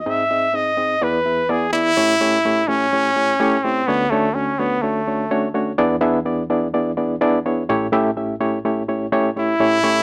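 Soul in a straight 4/4 at 126 BPM, warm and uplifting, cut from a longer piece. A mellow, breathy trumpet carries the jazz-style melody up front with light vibrato, playing solo for the first 2 seconds, dropping out at 5.5 seconds and returning at 9.4 seconds. Throughout, a reedy, barky electric piano accompanies with light overdrive and fast tremolo through its built-in speakers, moving through chords such as Ab, E7, A7 and Dmaj7 in a moderate studio reverb.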